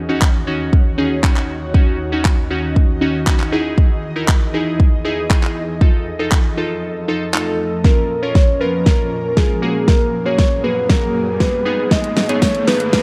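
Dance-pop at 118 BPM in Eb phrygian, driving and bittersweet, in which an ethereal, detuned pad and glassy, warbling digital keys pulse with sidechain pumping over a punchy, up-front electronic drum kit of fat snare, kick, handclaps and hi-hat; a round, octave-layered synth lead with vibrato and tape echo enters at 7.3 s during a short break that soon gives way to a filter-swept build-up and drum fill, while a very quiet riser from 10.6 s and a brief jingly tambourine at 12.4 s complete the dark, lightly reverberant mix.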